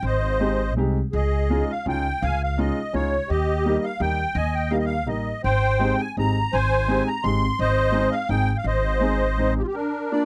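A lilting three-beat pulse, pushed and pulled in a free rubato feel, carries this charming, nostalgic musette waltz, cut from a longer piece. Up front, the musette accordion sings the melody with a reedy, shimmering voice, its musette tuning giving the line its nostalgic sparkle. An acoustic upright bass, plucked pizzicato on steel strings, anchors the low end with a warm, up-front tone until about 9.6 seconds. A clear upright piano joins at 0.4 seconds, adding polished, woody accompaniment with a present sound. The harmony moves from Abmaj7 through Dbadd9 and Eb back to Ab before reaching Bb at 9.7 seconds, all captured in a dry, close studio sound with a 1970s character.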